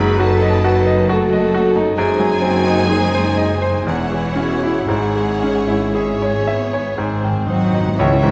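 The bright, brilliant grand piano stands up front in this passionate, brooding romantic movement for piano and orchestra, carrying the melody across a span from C#2 to E5 in C# minor. The pace is slow and pliant, moving in 3/4 at roughly 56-68 BPM with rubato, through chords that settle from D#dim/F# and G#7/F# onto C#m/E before arriving at G# at 7.0 seconds. A rich, focused violin section also carries the melody high above, while a second violin section sings a lush, expressive line with portamento from the background. Violas add close, vibrato-laden accompaniment, cellos and double basses anchor the bass with a smooth, bowed foundation, and a loose French horn section holds sustained chords beneath. Timpani played with medium mallets add a fill from 7.0 seconds, and at 8.0 seconds trumpets strike clear stabs on C#5 as very quiet trombones and a mellow tuba join at the close. Close, detailed microphones capture the orchestra in a moderate scoring stage reverb, and the passage is cut from a longer piece.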